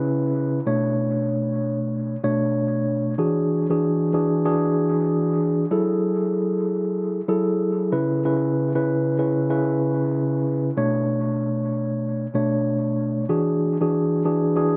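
A swung sixteenth-note hip hop groove in 4/4 sets a dark, tough mood, carried entirely by a mellow tine electric piano that plays alone for the full 14.8 seconds of this fragment of a longer piece. Clean and up front, it sounds as if heard through its own built-in speakers, shaped by high- and low-pass filtering and trailed by heavy dub echo in a moderate spring reverb. Its minor-seventh and ninth chords cycle through shapes such as Bm9, E9 and F#m9.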